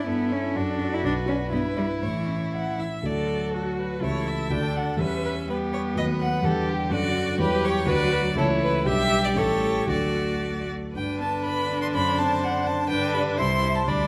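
A close, detailed recording in a moderate stage reverb captures this cheerful, lively classical-period movement for piano quintet, a quick 2/4 at 112-127 BPM with a rubato feel, moving from D major to G major at 11.0 s in a passage cut from a longer piece. A focused, up-front violin carries the melody with vibrato while a smooth, even second violin and an expressive cello, soft in attack and sliding with portamento, play second lines over a dark, mellow concert grand with deep bass. The clear viola joins the accompaniment at 3.0 s, and the phrases pass through chords such as A7/G, Bm, C#dim/E and B7/D# before arriving at G and closing on C.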